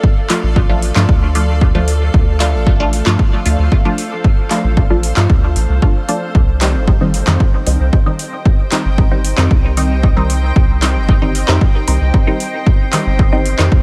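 Hazy and nocturnal, this dry, close-sounding slice of dub techno moves at 114 BPM in C dorian, anchored by a punchy, tape-warm analog kick and a round, deep sub bass pumping under the sidechain. A bright, wave-folded chord stab run through phaser, cassette tape and dub echo shifts from Dm to Cm at 6.3 seconds, with a second, very quiet and dark filtered stab riff above it, a blurred granular cloud pad, and an overdriven deep house kit of claps and metallic hats. At 7.8 seconds a calm, glassy texture of drifting overtones with chorus enters in the background.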